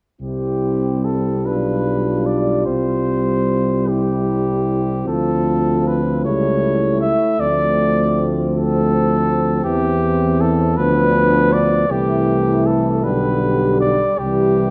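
This classical, hymn-like brass band excerpt moves in 6/8 with a free, rubato feel, its mood tender and serene. The cornet carries the melody up front with a mellow, smooth top, while the tuba anchors the bass, also forward in the mix and touched with light vibrato. Behind them, a French horn section with a vintage ensemble tone sings a second line, and a clear euphonium with a soft attack and light vibrato fills in the accompaniment. A trombone, distant and roomy with its own vibrato, rounds out the accompanying voices in the background. All five parts play together from 0.2 to 14.7 seconds through a gently shifting progression that resolves back to its home chord, set in a moderate recital hall reverb with a dark production.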